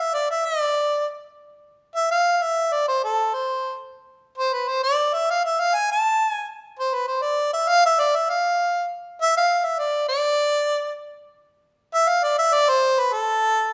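Klezmer in D minor at 99 BPM in 2/4 with a straight feel, bittersweet and soulful, cut from a longer piece. A lone harmonica carries the melody up front from start to finish, its tone warm with a smooth top, light vibrato and scooped notes in a jazz style, ranging from A4 to A5. A moderate recital hall reverb surrounds it, and a new section begins at 11.3 seconds.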